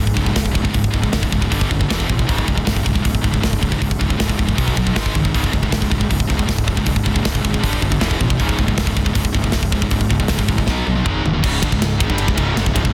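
Relentless and epic, this heavy metal passage in C# minor drives forward at 157 BPM in a straight 4/4, cut from a longer piece. Two scooped, high-gain electric guitars grind out the riff together from the background, their bright, distorted tone sitting behind a punchy, fuzz-laden electric bass that carries the low end with overdriven bite. A tight metal drum kit sits up front, entering at 0.1 seconds with a tight kick, medium-tuned snare, toms, hi-hat, and bright crash and ride cymbals, its airy, polished sound suggesting a big room. The harmony cycles around C#5 with turns through G5, E5, B5 and G#5, and a drum fill at 10.7 seconds launches a brief new section at 11.4 seconds. The mix is dense and heavily limited with very little reverb, giving the whole thing a compact, modern punch.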